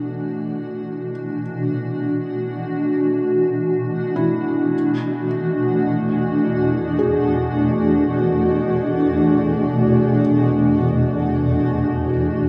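A granular cloud pad sits up front in this ambient excerpt, its blurred, evolving triangle tone swelling slowly into view as it fades in across the full 12.5 seconds, carried by its own built-in reverb. Held in free time and set in E mixolydian, its sustained chords spread from E2 to F#4, moving from E7sus4 to Bm/E at 4.7 seconds. Alongside it, a felt-muted upright piano plays soft, mellow arpeggios between D4 and G#4, very quiet and intimate, with the gentle noise of its action audible. A lush hall reverb with a 3.0-second decay wraps the recording in a dark production. The mood is weightless and luminous, a brief fragment cut from a longer piece.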